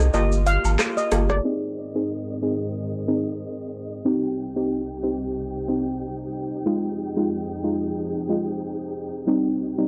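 Dark, woody bowed strings and a round sub bass open this sultry, hypnotic dancehall excerpt in C minor at 92 BPM with a lightly swung 16th feel, joined almost at once by a shimmering steel pan lead with tape echo, an overdriven electronic kit of handclaps, metallic hats, rim click and shaker, and background woodblock and cabasa. At 1.4 seconds the bass, pan and drums drop away, leaving the lush string chords and a soft, chorused pluck with a ring-modulated edge under a filter sweep through Ab, Cm and Fm7 until 9.9 seconds. The sound is dry and gritty, with a dulled top and lossy compression artefacts.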